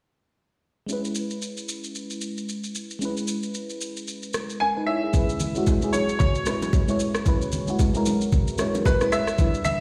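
Late-night and soulful, this amapiano excerpt opens with a mellow, round FM electric piano shimmering with chorus and phaser over a smooth, electronic R&B kit of soft kick, rim click and shaker; a clear, worn grand piano melody with tape echo arrives at 4.6 seconds, hand-struck congas and bongos join in the background at 5.1 seconds, and the whole is heard as if played on a big sound system in a bare stone room.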